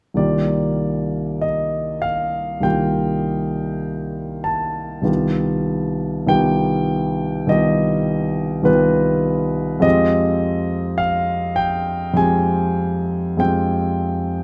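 A solo concert grand piano opens this mysterious, hazy fragment of a longer impressionist classical piece, drifting in a slow, rubato 4/4 at roughly 45-52 BPM over a Cm11 chord. The harmony clouds into Gaug7/C at 5.1 seconds and settles on Fm9 at 9.8 seconds, with the piano's deep bass and long sustain letting each chord linger. Close, detailed miking keeps the polished instrument intimate and up front, the soft clatter of its action audible, while a moderate recital hall reverb adds a gentle halo around it.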